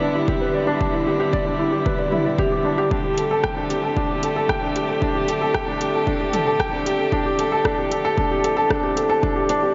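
A dark, worn baby grand piano riff sits up front from the start, its short sustain and audible action noise carried by tape echo, while a woody string quartet holds sustained chords beneath with sidechain pumping and a barely audible round sub bass hums underneath. This melancholic, intimate piano and strings electronica piece moves at 114 BPM in 4/4 over Em7 and Dsus4, building throughout as a punchy overdriven electronic kick enters at 0.3 seconds and a deep house kit with metallic hi-hats, rim clicks and toms joins at 2.1 seconds. A wet concert hall reverb surrounds the mix, and the top end is rolled off for a muted, shadowy sound in this excerpt cut from a longer piece.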